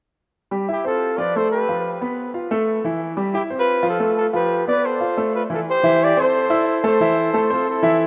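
Festive and danceable, this Latin fragment cut from a longer piece sets a clear, polished baby grand piano up front, accompanying from 0.5 s over a looping C, F and G7 progression, while from 0.7 s a warm trumpet section carries the pop-style melody with light vibrato, a smooth top and tape echo, all sitting in a lush hall reverb within a rough home demo mix.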